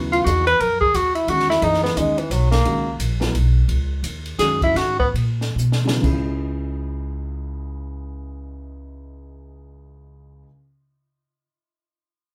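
Searching and hypnotic, this short modal jazz passage in a swinging 3/4 is cut from a longer piece, with a band playing live together in one room under a moderate studio reverb. A mellow tenor saxophone carries the melody as an up-front solo, its vintage tone touched with vibrato, until it drops out at 5.1 seconds. Beneath it, a pizzicato upright bass on gut strings sounds dark, thumpy and close, while a woody upright piano supplies the accompaniment from a suspended ninth harmony. A compact cocktail drum kit, airy and polished with a high-tuned snare and punchy kick, works across hi-hat, ride and crash, playing a drum fill from 5.6 to 6.0 seconds before its part ends at 6.2 seconds. The music slows toward the end of the saxophone solo, and the harmony settles onto a minor chord at 6.0 seconds as piano and bass carry on.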